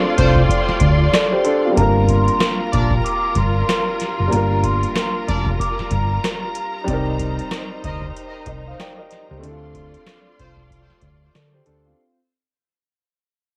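A cassette home recording with vinyl crackle and little reverb carries this dark, tough boom-bap hip-hop cut at 94 BPM with a swung feel in G minor, fading out throughout as a booming analog drum machine with deep kick, crisp snare and metallic hats sits up front beside a round, punchy hollow-body electric bass, under woody upright piano, lush bowed strings and tight, distant horn stabs with tape echo, while a ringing, airy vibraphone carries the melody from 1.8 to 6.8 seconds over chords moving from Dm7 through Gm7 and Cm7.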